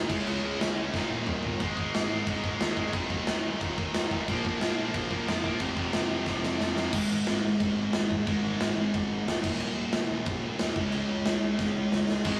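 This is a rough rehearsal-room recording with light reverb, cut from a longer rebellious, rowdy punk rock piece at 180 BPM in 4/4 with a straight feel. Up front sits a big, acoustic rock drum kit with a punchy kick, a medium-tuned snare, a rolled-off top, crash cymbal and toms, capped by fills that close each section. Three picked electric guitars play riffs in the background: a tight distorted one runs throughout, a sludgy overdriven one drops out after the opening and rejoins at 4.3 seconds, and a heavy, double-tracked, high-gain one with a bright edge falls away at 6.9 seconds. Beneath them, a growly fuzz electric bass, recorded direct and amped, carries the low end with overdrive. The riffs move through power chords such as Db5, Ab5, Eb5, Bb5 and F5, with the opening section returning at 6.9 seconds.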